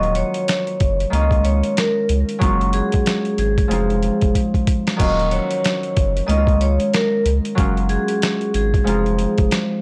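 A pitched-down, compressed sampler-style drum kit with a thumpy kick and medium-tuned snare sits up front in this dark, gritty boom-bap hip-hop excerpt at 93 BPM in Eb dorian, with a saturated triangle sub bass holding the low end, a mellow fingerpicked Celtic harp ringing through cassette-tape coloring, and a hard-mallet vibraphone melody with slow motor vibrato and analog delay floating above a looping Ebm9–Db69–Gbmaj9–Fm7 progression, all in a dry hardware recording with light digital ambience and a drum fill at 4.4 seconds.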